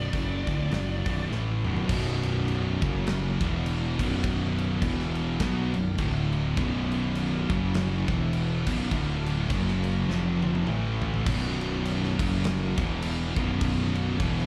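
A compressed fuzz lead guitar with wah and echo opens with a brief phrase that ends at 1.3 s, over a brooding, sludgy stoner and doom metal riff ground out by an up-front, dark thick fuzz guitar, a second, very quiet fuzz guitar and a bright, double-tracked high-gain guitar in the background, alongside a growly, overdriven fingered bass and a big acoustic drum kit with a punchy kick and medium-tuned snare that rolls into fills at 1.3 s and 10.1 s, the swung groove captured live through a club PA with light reverb in this cut from a longer piece.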